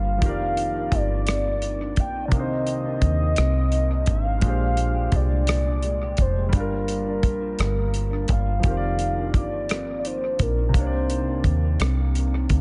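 Slow R&B in a six-eight lilt at 57 BPM, this late-night, sultry excerpt sits in C minor and moves through lush extended chords like F13sus4, Cm9, Bb13 and Gm7. A mellow, horn-like synth lead with a soft attack and warbling vibrato carries the melody, its sustained sawtooth tone thickened by chorus and analog delay. Beneath it, an electric guitar through a small old amp plays a second line with a slightly broken-up, compressed, lo-fi character and its own analog chorus. A clear concert grand piano supplies the accompaniment with natural depth in its low register, touched by analog delay. Anchoring everything up front are a deep, round, foam-muted dub bass and a damped 70s drum kit that enters at 0.2 seconds, whose tight kick, hi-hat and rim clicks sound dry with a rolled-off top. The mix is echo-heavy and set in small room ambience, with a softened top end throughout.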